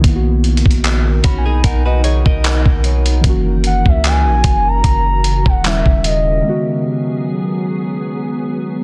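Muted, felt-like synth keys, a clean 808-style bass and a dusty soul sampler-style drum kit open this dreamy, romantic contemporary R&B excerpt at a relaxed 75 BPM in B major, with a light swing on the sixteenths. The drums sit up front with a thumpy kick, gritty handclaps and hi-hat, sounding compressed and re-recorded in a large room, while the deep, boomy bass decays beneath them in a mellow sine tone. A glassy, ethereal FM pad fades in with sustained, warbling chords, coloured by ensemble chorus, built-in reverb and sidechain pumping, as the soft, dark keys add fills around the harmony. From 1.2 seconds a clean electric guitar, recorded direct and picked, weaves quiet arpeggios through tape echo, and at 3.7 seconds a smooth, gliding sine lead takes the melody with portamento, vibrato, chorus and tape echo. The chords move from Bmaj7 through F#7 and D#7b9 to G#m7. The bass and drums drop out near the end, and once the lead finishes, only the keys and pad remain under a dense, heavily limited modern master with light digital ambience.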